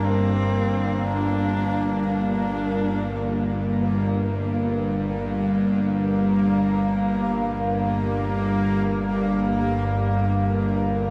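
A clear, husky horsehead fiddle opens this desolate dark ambient drone, its single bowed line sung with vibrato and portamento in a focused, boxy tone, trailed by shimmer reverb and delay until it falls away at 3.5 s. Beneath it from the start, a tense, string-like drone sits up front in the low register, its detuned sawtooth body edged with a noise layer and vibrato. A deep, moody pad holds sustained chords in the background, thickened by a sub octave, chorus and shimmer reverb. Alongside, a resonant, bubbling texture hovers on one pitch, its filter stepping at random as it sustains through to the close at 11.1 s. The unmetered piece, cut from a longer work, unfolds over a single chord in a vast, echoing cathedral reverb that gives it a bleak, suspended weight.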